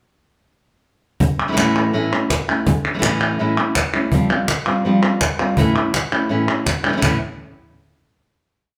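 A fiery, passionate flamenco piece at 165 BPM in straight 4/4 opens at 1.2 seconds with an up-front classical nylon-string guitar, fingerpicked and rasgueado-strummed with taps on the top over A and Fsus2, alongside a snappy, compressed and saturated cajon struck with hard hands for its snared bass and slap tones, joined at 1.4 seconds by crisp, vintage, band-limited palmas hand claps marking the cycle, all played live together in a wet, large studio room until the groove gives way to a final A chord at 7.0 seconds.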